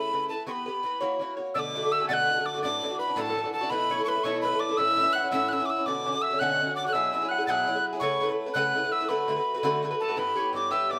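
A mellow metal tin whistle carries the melody up front, its airy tone marked by breathy chiff, tongued notes and touches of vibrato. This is a dark yet spirited Celtic jig in a lively 6/8, cut from a longer piece. Beside it, an Irish bouzouki plays picked accompaniment on its double strings, its sound both warm and metallic and sitting forward in the mix. At 1.6 seconds a concert harp enters with a bright, ringing, fingerpicked second line set lower in the balance. The harmony moves through colored chords such as Bm7, Dadd9, Esus4 and Eadd9 before arriving on Em at 10.2 seconds. The trio sounds like a band playing live together in a moderate stone room, with a reverb that gives the whole performance a natural resonance.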